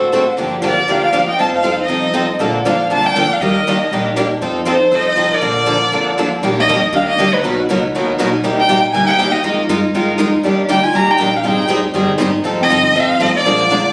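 Acoustic jazz manouche swing at a lively 239 BPM in Bb major, shifting to Eb major at 6.4 s. Throughout, a warm, up-front bowed violin carries the melody with vibrato and portamento over a mellow, roomy clarinet second line with subtone, a bright picked steel-string acoustic guitar with audible finger squeak, a boxy picked swing-style guitar, and a dark, woody pizzicato upright bass, all heard through light reverb and compression as if captured on a phone in the room.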